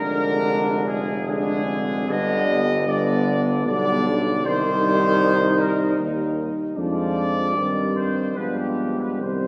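A dark trumpet section carries the melody up front from the opening moment, sounding alongside a mellow, soft-attacked French horn section on a second line in the background, a bright, distant trombone and a warm euphonium in accompaniment, and a clear tuba holding the bass, the horns, trombone, euphonium and tuba each touched with light vibrato, in this elegiac, melancholic, hymn-like classical brass band passage in C minor at 76 BPM in 3/4, its rubato phrasing moving from Ddim/F through G and Cm to a closing G7b9 within a roomy church reverb, cut from a longer piece.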